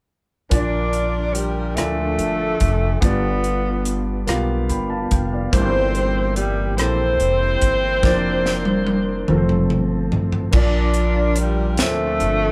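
Light reverb surrounds a band playing live in one room on this jubilant, uplifting slow gospel passage in 6/8, cut from a longer piece. A breathy, whispered tenor saxophone with scooped notes carries the melody beside a mellow horn section in octave doubling. Beneath them sit a long-sustaining upright piano, a growly, woody pizzicato upright bass, and a soft, flute-like tonewheel organ turning through a slow rotary speaker in the background, while an up-front fusion kit with bright cymbals, a high-tuned snare and a punchy kick drives the groove, with an organ fill at 4.3 s, a drum fill from 8.0 s, and the chords moving from Bb through G7 and C7/G before returning to Bb at 10.5 s.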